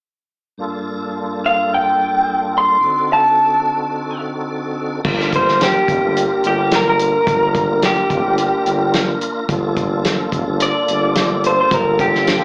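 A straight-eighth soul blues groove in 4/4 sets a smoky, soulful mood in this fragment of a live club gig heard through the venue's PA, where a full, clean tonewheel organ with slow rotary speaker, chorus vibrato and slapback echo opens at 0.6 seconds, a slightly broken-up, lo-fi electric guitar from a small old amp carries the melody up front with its own slapback from 1.5 seconds, and at 5.0 seconds a dry, mid-forward soul drum kit with a tight kick and medium-tuned snare arrives just ahead of a tuba bass with light vibrato and a smooth top, heard under light club reverb and a small-speaker sound.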